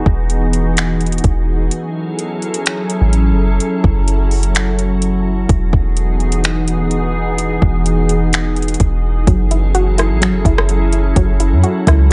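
A dry, close mix with a dark, rolled-off top frames this melancholic, ethereal excerpt of atmospheric cloud-rap, moving at 127 BPM in a half-time 4/4 feel in F# dorian over Emaj9 and F#m7 chords, with a break from 1.7 to 2.7 seconds. A glassy, warbling FM pad sustains chords with ensemble chorus, built-in reverb and sidechain pumping, while a boomy, sine-like 808-style bass and an overdriven, up-front electronic R&B kit of soft kick, metallic hi-hats, finger snaps and rim clicks carry the groove. At 9.3 seconds a soft, round pluck enters with chorused, tape-echoed arpeggios.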